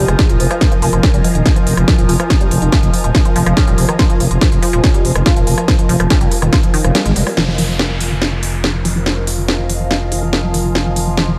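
Driving peak-time techno with an intense, hypnotic pull, built on a juicy, squelchy blip pluck riff with phaser, tube saturation and delay, a growling FM bass, and a heavy, tape-warm kick beneath a techno kit of cracking snare, smooth hats and rim clicks. A resonant drone with moving overtones sits in the background, while an ethereal, airy pad adds full-bodied detuned texture through ensemble chorus and reverb, with sidechain pumping on the synths and hats. The kick stops at 6.6 seconds, the band hits an accent at 6.9 seconds, and from 7.4 seconds a filter sweep on the synth arpeggio and an electronic downlifter carry this cut from a longer track.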